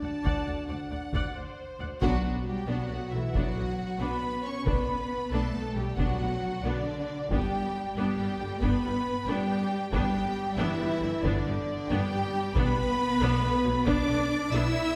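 Close, hard-stick taiko drums drive this heroic, epic cinematic orchestral cue from 0.2 seconds, hitting a full-ensemble accent at 2.0 seconds as the music moves from its brief opening into the main passage. The tempo sits at 91 BPM in a straight 12/8, in B minor, with the harmony moving from D to Bm7, then G, and back to Bm by the close of this extract from a longer piece. A clear, smooth, even violin section carries the melody high above with vibrato, while a second, lush and focused violin section plays a supporting line that sounds more distant. A clear, intense viola section fills in the accompaniment, and a dark, roomy French horn section holds sustained chords in the background. Underneath, a soft-attack, expressive cello section and a rich, even double bass section share the bass, both bowed with vibrato. A wet scoring-stage reverb places the orchestra further back in the hall, giving the strings and horns a grand, spacious sound.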